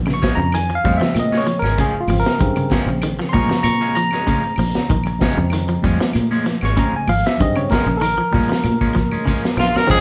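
Funky and intense, this 96 BPM afrobeat excerpt in Bb dorian rides a single Bbm7 chord as a barky, lightly overdriven tine electric piano solos up front over round, foam-muted fingered bass, a crunchy, saturated breakbeat drum kit with dark cymbals and a fill at 9.1 seconds, bright clean arpeggios from a semi-hollow guitar, twangy stabs from a second electric guitar at the edge of break-up, woody claves, and very quiet, high-tuned congas, until a raspy tenor saxophone and a distant trumpet enter at 9.6 seconds, the whole band captured live in one lightly reverberant room.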